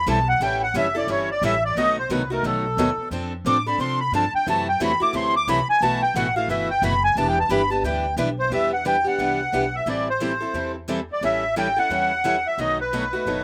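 A swung 4/4 pulse at 178 BPM drives this fiery, virtuosic passage of acoustic string swing in E minor, taken from a longer piece. Up front, a reedy, sweet accordion with a light tremolo tuning carries the melody and takes a solo over the first 8.5 seconds, sitting mid-forward in the blend. Beneath it, a picked archtop guitar with a warm tone and a slapback echo joins a bright parlour steel-string guitar with fresh strings, both entering at 0.1 seconds to supply the accompaniment, finger squeaks audible on their boxy bodies. A woody, thumpy upright bass on gut strings plays pizzicato low in the mix, dark and understated. The harmony moves through chords such as A7, F#m7b5 and Em7, and shifts into a new section at 8.5 seconds that passes through Am7 and B7. The sound is dry, recorded outdoors with little reverb.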